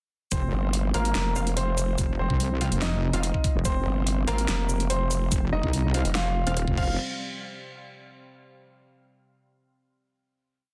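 A half-time 4/4 beat at 144 BPM drives this aggressive, menacing heavy wobble dubstep piece: a knocking electronic kick and a tape-warm drum kit with a huge snare, metallic hats, shaker and crash carry the drop from 0.3 seconds beneath two saturated, up-front wobble basses with changing wobble speed, one a heavy, detuned sawtooth and the other a nasal, formant-filtered voice answering it, while a polished grand piano repeats a riff in octaves through dub echo, a very quiet morphing wavetable pad enters at 2.3 seconds, sparse bright orchestra-hit-like stabs echo in the background, and the dense, heavily limited master ends on a final hit at 7.0 seconds.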